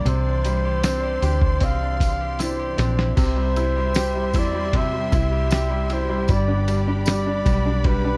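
A breathy, whispered flugelhorn carries the melody with soft vibrato in this hopeful, tender pop ballad, set over a woody upright piano with audible action noise, lush bowed strings and a very quiet, twangy clean guitar playing arpeggios. A round, foam-muted electric bass and a compressed, sampler-style drum kit with a thumpy kick sit up front, with a drum fill from 2.4 to 3.2 seconds, while a jingly tambourine stays distant in the background. The dry, close 1970s-style sound gives this excerpt an intimate feel as the harmony moves from Cadd9 through C to G.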